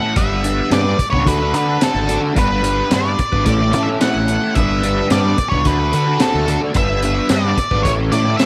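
A straight 4/4 groove at 109 BPM drives this trippy, kaleidoscopic psychedelic rock fragment. Up front, a double-tracked crunchy guitar plays the riff through a rotary speaker while a fuzzy octave-fuzz lead carries the melody with distortion and analog delay, all over a cycling G, D, G, A progression. At 0.2 seconds a crunchy breakbeat drum kit of tight kick, high-tuned snare and hi-hat, sounding gritty and dark with a rolled-off top, enters together with a growling, round overdriven electric bass. Light reverb and small room ambience frame this short cut from a longer piece.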